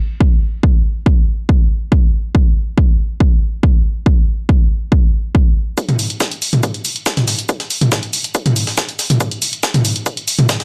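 A heavy, overdriven electronic kick drum opens this relentless, hypnotic techno excerpt at 0.2 s, pounding up front at 140 BPM in a straight 4/4 with a dry, gritty hardware sound. At 5.8 s a build-up begins as a punchy analog drum machine, re-recorded in a large room, adds low-pass-filtered hi-hats and toms that pump against the kick. Alongside it comes a quieter, pitched-up, sampler-style breakbeat kit with tape-tinged, high-passed hi-hat, shaker and a medium-tuned snare, before a drum fill arrives at 9.2 s.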